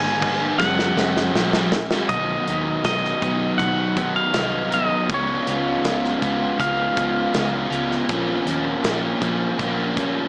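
A hazy, wistful shoegaze and dream pop fragment at 80 BPM opens with a crunchy, double-tracked overdriven guitar riff up front with subtle chorus, a dark, round foam-muted fingered bass, and a clean, twangy guitar melody that warbles in pitch through slapback echo over G#m and F#sus2. A big acoustic rock kit with punchy kick and bright cymbals enters at 0.2 seconds and plays a fill from 0.6 to 2.1 seconds, leading into a passage over B, C#7 and A#m, where the twangy melody drops out at 7.7 seconds. A huge ambient reverb washes over the mix, which has a small-speaker sound.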